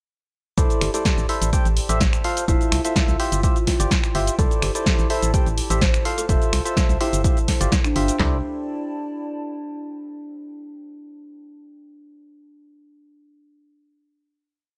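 The sound is dry and close, with little reverb, giving this uplifting, euphoric piano house piece a tight, present feel. From 0.6 seconds, a punchy analog drum machine, re-recorded in a small room, drives a four-on-the-floor kick with toms, snare and handclaps, while a second kit adds programmed closed and open hi-hats, shaker, finger snaps and a backbeat snare. Underneath, a dark, hollow FM bass with an organ-like tone plays a syncopated riff with sidechain pumping, and a nasal, wave-folded organ stab punches out dotted-rhythm chords in close voicing, coloured by chorus, dub echo and the same pumping. A woody, buzzing kalimba with a boxy ring adds short plucked phrases, and a warbling, nostalgic tape-like pad sits in the background, detuned and lo-fi with chorus and its own reverb. The chords cycle through C69, Am7, Fmaj7 and G7sus4 twice before the groove drops out around 8.2 seconds, leaving a final C69 chord on the pad until 10.1 seconds.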